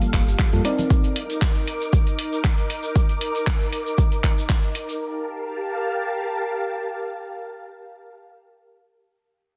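This moody, deep house excerpt in G minor rides a swung 117 BPM groove, with an up-front, overdriven electronic kick and a small-room kit of handclaps and hi-hat joined by a grainy tube shaker to 5.0 s, while soft-handed congas and a sine-and-triangle sub bass with octave sound only briefly at the start. A round, warbling FM electric piano with chorus and analog delay plays short stabs over Gm9 and a rootless Cm9 until 1.2 s. A silky string machine holds slow-attack chords to 8.2 s, coloured by phaser, ensemble chorus, 12-bit sampler grit and sidechain pumping, all in light reverb and a dense, heavily limited master.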